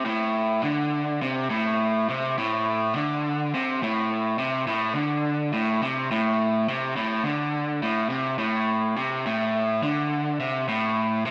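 Gritty and swaggering, this short rock excerpt in A minor moves at 104 BPM in a straight 4/4, with a raw garage guitar playing solo from 0.0 to 11.3 seconds in a low register between A2 and D3. The electric guitar is picked, overdriven and double-tracked, sitting up front with a warm tone. A wet spring reverb with a long 2.5-second tail surrounds it, and the passage shifts into a new section at 8.4 seconds.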